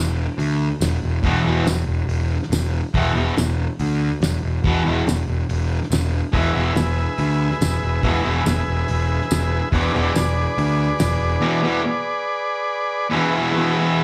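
Heard through a club PA with light small-room reverb, this raw, rowdy garage rock excerpt opens on an overdriven, up-front fuzz bass, soon joined by a dry, cloth-damped drum kit with a fat snare and tight kick, a jingly tambourine and a bright, double-tracked fuzz guitar riff with slapback echo, before a buzzy combo organ with light vibrato adds sustained chords from 6.3 s, and once bass, drums and tambourine have stopped by 11.4 s, guitar and organ carry the break and play on to the end at 14.0 s.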